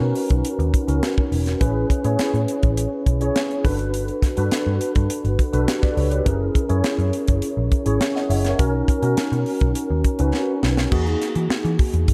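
A mellow tine electric piano with ensemble chorus and a round, foam-muted picked electric bass open this upbeat, glossy 1980s jazz-funk pop excerpt at 103 BPM in B major, joined at 0.2 seconds by a dry, tight funk drum kit with bright cymbals and a high-tuned snare that sits up front beside the piano. Together they move through Bmaj7, Amaj9, Gmaj9 and F#9, and the drums play a fill at 10.3 seconds that leads into a new section on Emaj9#11 at 10.9 seconds, all within a dark production and small-room ambience.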